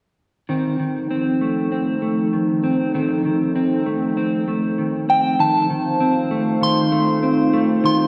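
A dark, clean electric guitar sits up front with fingered arpeggios from 0.5 s over an F7 chord, joined at 1.1 s by a warbling, nostalgic tape-like pad of sustained chords and at 5.1 s by a pure FM synth bell melody with phaser and delay, the mix bathed in wet hall reverb and worn cassette pitch drift in this dreamy, blissful dream pop excerpt.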